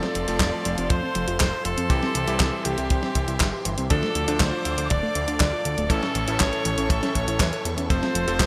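A straight 4/4 feel drives this playful, danceable italo disco passage, cut from a longer piece, with a clean 12-bit drum machine up front supplying handclaps, hi-hat and a medium-tuned snare treated with gated reverb, joined at 0.4 seconds by a dry, tight acoustic kick. A fat, detuned sawtooth bass arrives at 0.2 seconds, its fast attack and decaying notes anchoring the low end. Over the chords of F, C, Dm and A, an edgy alto saxophone carries the melody as a forceful pop-style solo with vibrato and a digital delay trailing its phrases. Further back, a bright electric grand piano with a clangy bass adds cutting stabs, while a soft, round pluck spins dark arpeggios coloured by chorus, cassette tape character and its own delay. A smooth, bowed studio string section holds sustained chords in the background, and the whole mix sits in moderate plate reverb with a bright 1980s-style digital sheen.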